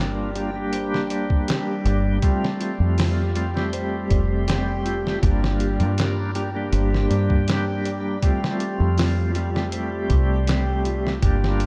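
A straight 80 BPM trip hop groove in 4/4, on a gritty, pitched-down sampler kit with a thumpy kick that enters at 0.4 seconds, carries this cinematic, melancholic cut from a longer piece, where a round, foam-muted dub bass and a reedy tonewheel organ on slow rotary and tape echo trace Gm7 and Fadd9 while a thumb-plucked concert harp rings out filtered, delayed arpeggios and a very quiet reversed, detuned texture hovers beneath, all soaked in dreamy plate reverb.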